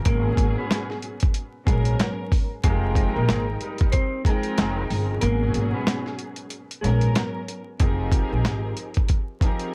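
Dark, warm production with vinyl crackle frames this moody boom-bap hip-hop cut in F minor, swinging at 93 BPM. Gritty, overdriven sampler-style drums with a thumpy kick sit up front beside a woody pizzicato upright bass, while a lush bowed string section with vibrato and a clean, fingered electric guitar melody fill the space above, the kick dropping out at 5.2 seconds. A tight, smooth-topped horn section adds mellow jazz-style stabs in the background from 2.7 to 4.8 seconds.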